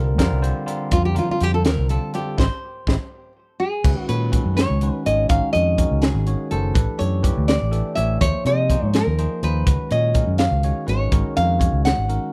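Dry and close, this funky, bright electric jazz fusion excerpt moves at 82 BPM in 6/8, with a full-bodied, fingerpicked nylon-string guitar carrying the melody up front over a barky, bell-like tine electric piano treated with phaser, a growly, amped fingered bass and a crisp fusion kit with a high-tuned snare and punchy kick, as a band accent at 2.4 s and a drum fill at 3.1 s lead into suspended chords in Db mixolydian from 3.8 s.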